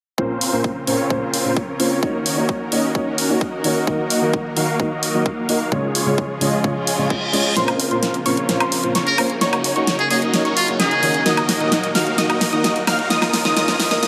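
Anthemic and euphoric, this festival progressive house excerpt moves in a straight 4/4 pulse over a Bb minor progression, opening with a dark, mellow concert grand piano and a huge, bright supersaw chord riff up front, both pumping against the sidechain and trailing dub echo. Beneath them an airy supersaw pad with a slow attack sits in the background, while a punchy layered electronic kick and a big-room dance kit with a huge snare, hi-hat and woodblock drive the groove. Just before the second half, a very quiet reverse cymbal and riser arrive at 6.8 seconds, and the electronic kick drops out at 7.2 seconds. At 7.6 seconds a build-up begins with a drum fill and filter sweeps on the supersaw chords and the lead, as a catchy plucky unison lead spins high arpeggios with dub echo and a thick, very quiet detuned saw bass with chorus fills out the low end. A distant, buzzy trumpet with a metal mute cuts in briefly with a forceful, jazz-style solo phrase full of vibrato, all set in a lush hall reverb.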